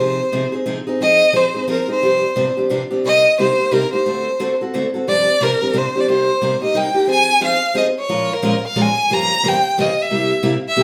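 A duo recorded live in one room is heard through a wet studio reverb that gives the two instruments a shared, lively space, with both placed up front. This short jazz passage, cut from a longer piece, swings in a lilting three-beat metre and carries a bittersweet mood. A single bowed violin carries the melody with a bright, focused tone and expressive vibrato, sitting slightly above the accompaniment in the balance. Underneath, a picked steel-string acoustic guitar supplies the harmony with a boxy body and the crisp ring of fresh strings, moving through minor-seventh chords and suspended dominants. Around 7.1 seconds the music shifts into a new section centred on F minor, passing through a half-diminished chord before arriving on a dominant seventh near 10.1 seconds.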